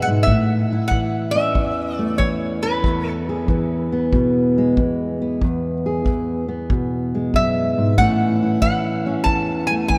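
A swung 4/4 pulse at 94 BPM drives this soulful, rollicking slice of acoustic country blues in E major, cut from a longer piece. A fingerpicked steel-string acoustic guitar sits up front throughout, its dark, woody tone and old strings giving the low accompaniment an auditorium-sized body. Over it, a lap resonator guitar played with slide and fingerpicks carries the melody in two phrases, from 0.0 to 3.2 seconds and again from 7.4 seconds, its bright, metallic, nasal voice also placed up front. A tight, natural kick drum played with brushes enters at 0.3 seconds, sounding as if caught in a small room. The harmony moves from A to E and back to A, and a wet cathedral reverb with a long 5.3-second tail sets the music in a vast, echoing space.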